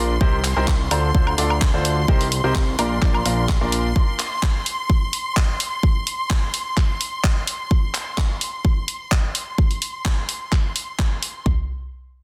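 Soulful and energetic, this piano house piece opens with a bright, woody upright piano riff and a fat, detuned sawtooth analog bass, both pumping under sidechain over Cm7, Dm7 and Bb chords, with delay trailing the piano until both drop out at 3.9 s. A lush, vibrato-rich symphonic violin section holds sustained, sidechained chords through 11.5 s, while an up-front, tape-tinged house drum kit carries on with a punchy kick and toms plus handclaps, hi-hat, woodblock and a soft-clipped snare, the layered drums sounding re-recorded in a large room. Digital ambience surrounds the dense, heavily limited modern master.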